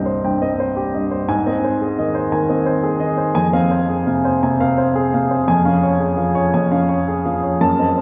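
In a rubato 4/4 at 113 BPM, this bittersweet, passionate romantic character piece, cut from a longer work, features a solo upright piano with a woody, polished, present tone and long sustain, ranging from C2 to A5 over chords moving from Cm to Ab, Fm and Db/F, all bathed in a wet church reverb with a 3.4-second decay that places the listener further back in the room.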